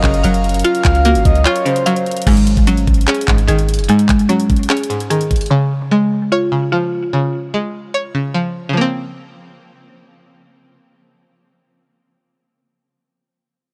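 Brooding and eerie, this half-time trap excerpt opens with a soft, breathy, flute-like synth lead carrying a second line with vibrato through its first 1.9 seconds, over an airy pad holding sustained chords that fade by 2.2 seconds. A string-like resonator pluck, twangy and warbling with a vintage edge, sits up front as accompaniment for the full 12.6 seconds, coloured by chorus and phaser. A woody, round mallet-like synth pluck spins arpeggios through digital delay until 8.8 seconds. Underneath, a deep, mellow 808-style bass rings with long, decaying sine tones, while an up-front trap kit with a knocking kick, bright hi-hats, handclaps and crash cymbal drives the groove until 5.5 seconds. A brief break falls between 1.5 and 2.3 seconds, and the harmony moves from Gbmaj7 through Ab7sus4 and Db to a closing Bbmadd9, all set in light reverb and digital ambience.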